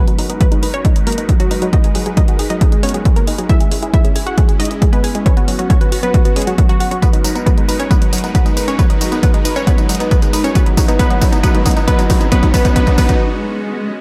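A punchy, up-front electronic kick drives this soaring, bittersweet uplifting trance build-up in G# minor at 136 BPM, cut from a longer piece, with a detuned unison pluck carrying the melody through delay and sidechain pumping while a nasal, round analog pluck with chorus spins arpeggios and a lush supersaw pad with phaser holds sustained chords in the background over G#m7, C#m and Bsus2. Layered electronic hi-hat and tambourine sit beside a barely audible tight sequencer bass, a drum fill runs from 7.0 seconds, and a very quiet riser and swell enters at 9.2 seconds before the parts drop away at 13.2 seconds, leaving the pad and riser in a brief break. The production is dark, set in a moderate digital room reverb.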